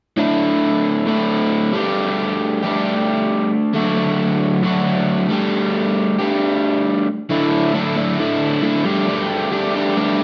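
A straight 4/4 pulse at 135 BPM drives this short rock cut, taken from a longer piece. A lone crunchy, overdriven electric guitar carries everything from 0.2 to 10.2 seconds. It is picked and double-tracked and sits up front, ranging from A2 to G4. The harmony moves through Asus4, Gsus2 and D, then returns to Asus4 and Gsus2 when a new section begins at 7.3 seconds. The mood is wistful and jangly, framed by a dark, warm production and a wet studio reverb with an RT60 of 0.8 seconds.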